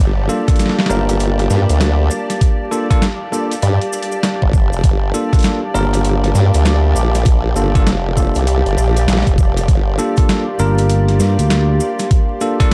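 An overdriven, knocking electronic kick sits up front in this playful, swaggering glitch hop fragment, layered with a compressed, pitched-down boom bap kit whose gritty snare and hi-hat carry a large-room character and a swung sixteenth-note feel. Beneath it, a saturated formant-filtered wobble bass, built from sawtooth and sine tones with chorus, growls over a single Gm9 harmony until it drops out at 10.0 seconds. A bright, growly fingered electric bass then takes over from 10.6 to 11.8 seconds. Bell-like, barky electric piano stabs ring through a digital delay, pumping against the kick alongside a dark, nasal analog pad that carries chorus and vintage sampler grit and a blurred granular cloud pad bathed in its own reverb. Grainy acoustic maracas sit quietly in the background, and a layer of vinyl crackle over a mostly dry mix lends the whole piece a dusty, crate-dug feel.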